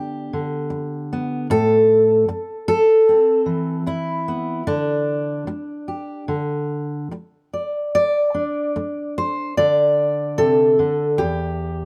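This is a folk piece for solo fingerstyle acoustic guitar, pastoral and nostalgic in mood, moving at about 75 BPM in 4/4 with a loose, rubato feel. A single fingerpicked steel-string dreadnought carries everything, ranging from E2 up to D5, and its old strings give it a woody, full-bodied voice that sits up front. The harmony begins on G, moves to Am at 1.5 seconds, settles into Dsus4 and then D5, and closes on Em at 11.2 seconds. The sound is dry and close, like a 1970s studio recording, with little reverb around the guitar. The passage is a short fragment lifted from a longer piece, lasting just under 12 seconds.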